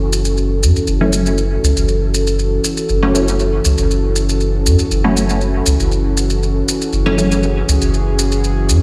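A round, deep sine sub bass sits up front through this hypnotic, cavernous dub techno excerpt at 119 BPM in F# minor, holding an F#m7 harmony beneath a soft, breathy pad whose detuned, ring-modulated layers drift in with a slow attack, long release and chorus. From 1.0 to 7.3 seconds a muted, resonant chord stab with wave-folded, detuned tones plucks through phaser and dub echo under a filter sweep, while close, grainy acoustic maracas add texture. The excerpt sounds as though it is played on a big sound system in a bare stone room, with an echo chamber reverb lending a roomy, lingering tail.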